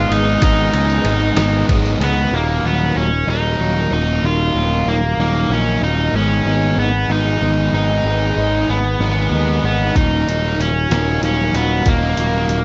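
Indie rock in a slow 6/8 with a cool, bittersweet mood, where a biting overdriven guitar melody rides over a sludgy, double-tracked distorted guitar riff and a round, overdriven picked bass, all up front, while a silky string machine with phaser and ensemble chorus sustains chords very quietly beneath, a mellow rubber-mallet glockenspiel rings briefly at the start, a jingly tambourine sits very quiet until 2.0 seconds, and a muffled, pitched-down sampler-style kit with a thumpy kick and fat snare drops out after 2.2 seconds and returns at 10.0, the whole cut, taken from a longer piece, sounding dry and worn with warbly cassette-tape pitch drift.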